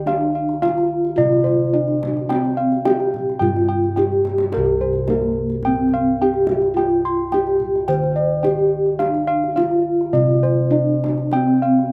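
A straight 4/4 pulse at 107 BPM carries this shimmering, ceremonial fragment of Javanese gamelan in C slendro, cut from a longer piece and recorded outdoors with little reverb. A mellow bronze metallophone, struck with padded disc mallets and tuned in pairs that set up shimmering beats, carries the melody with a slapback echo, while round, beating bossed gongs hold the bass beneath, both sounding boxed into a small room. Bright, up-front bossed gongs play arpeggios with their own slapback echo, and a tight, distant kendang, played with soft hands, adds percussion, including a short drum fill at 4.1 seconds.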